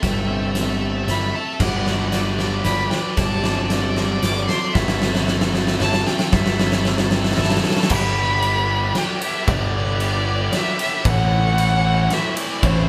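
A rich, smooth violin melody with vibrato opens this hopeful, soaring post-rock piece at 114 BPM in 3/4 and G major, over a tight, double-tracked distorted guitar riff, twangy twelve-string arpeggios in the background, and a fuzzy overdriven bass up front. A big acoustic rock kit with a fat snare and punchy kick drives a build-up and drum fill through the first 7.9 seconds, after which the twelve-string drops out and the chords move from G to Am. The band plays live in one room with moderate reverb.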